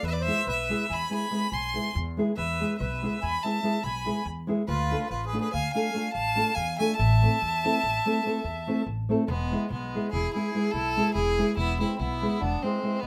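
Moderate studio ambience surrounds this short cut from a longer Balkan folk piece, with the violin, guitar and upright bass sitting up front. It moves in an asymmetric 11/8 at 286 BPM counted in eighths, with a straight feel and tuning set at A4 = 441 Hz, and the mood is bittersweet yet fiery. A single clear, smooth and even bowed violin carries the melody with vibrato, while a reedy, vintage-toned accordion with slow beating supplies a second line. The thumb-plucked classical nylon-string guitar adds accompaniment from 0.3 seconds, and a woody pizzicato upright bass with steel strings anchors the low end. The harmony travels from E to D minor and A minor before returning to E at 9.3 seconds, where the opening phrase begins again.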